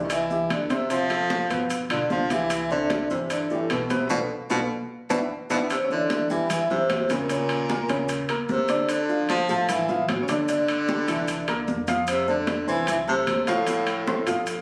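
Captured on a phone in a club-like room with moderate reverb, this lively, sunny stretch of Afro-Cuban jazz has a vibraphone played with soft mallets carrying the melody in a mellow, ringing tone with fast motor vibrato, while an up-front, breathy baritone saxophone with slapback echo adds a clear second line beneath it. A woody, slightly detuned upright piano with short sustain fills in the accompaniment, and a growly, thumpy pizzicato upright bass sits in the background. Just after the start, bright high-tuned congas, ringing metal-shell timbales and grainy, saturated maracas join, with a band accent from 4.1 to 5.7 seconds before the harmony moves into a new section.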